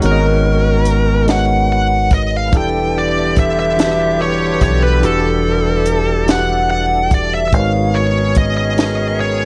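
Yearning and late-night, this six-eight R&B piece sets a bright, distorted high-gain lead guitar melody up front over a deep, round fingered electric bass, a compact cocktail drum kit with a punchy kick and high-tuned snare, clean tine electric piano accompaniment, a very quiet tonewheel organ turning on a slow rotary speaker, and tight, distant horn stabs in the background, all moving from G#m11 to Em11 and back within a dark production touched by light reverb.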